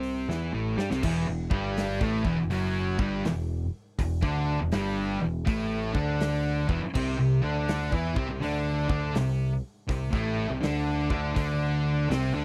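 Two thick, fuzz-distorted guitars, one dark and one warm, sit in the background of an ominous stoner and doom metal groove at 81 BPM with a swung feel. A growly, punchy picked bass is up front, and a big rock drum kit with a punchy kick and bright cymbals plays a fill from 0.3 to 1.0 seconds over an A5 chord. At 1.0 seconds a tight, bright, double-tracked distorted guitar joins as the hypnotic riff settles on E minor, then moves to Amadd11 at 6.9 seconds, all in a dry, close 1970s-style studio sound.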